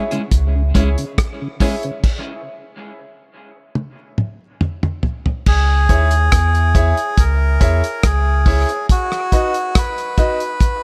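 A small room ambience surrounds this hypnotic, spacious dub reggae excerpt, with the damped 70s drum kit and the round sine sub bass sitting up front. Over a C#m chord, the piano's bright, brilliant stabs with long sustain and deep bass are filtered and thrown into dub echo, while a slightly broken-up, picked electric guitar with lush chorus and a mellow tonewheel organ, lightly overdriven and turning on a slow rotary speaker in the background, appear only in the opening moments. At 2.0 seconds the band stops on an unharmonised gap, and from 3.8 seconds the dry kit, with its dark cymbals, tight kick, rim click and toms, plays a drum fill. At 5.5 seconds the C#m returns and a reedy, breathy melodica with a nasal, airy edge takes the melody up front, its line soaked in dub echo, before the harmony moves to B. The sub bass stays deep and sustained with a fast attack until it stops shortly before the end.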